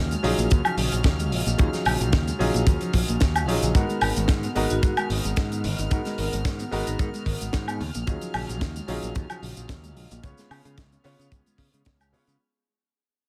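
A tight, up-front kick and a funk drum kit with a high-tuned snare, hi-hat, cabasa and woodblock drive a lightly swung nu-disco groove at 111 BPM in Eb minor, joined by a bright, direct picked electric bass that pumps against the kick. A brilliant, slightly worn grand piano with tape echo carries the accompaniment over a dark, very quiet arpeggiated pluck with chorus, while an earthy chamber violin section holds distant sustained chords, moving through Ebm11, Abm9 and Db7. In this cosmic, sleek excerpt from a longer piece, a metallic, ringing vibraphone with hard mallets adds a short background melody from 4.7 to 7.4 seconds as the whole passage fades out from 3.8 seconds onward.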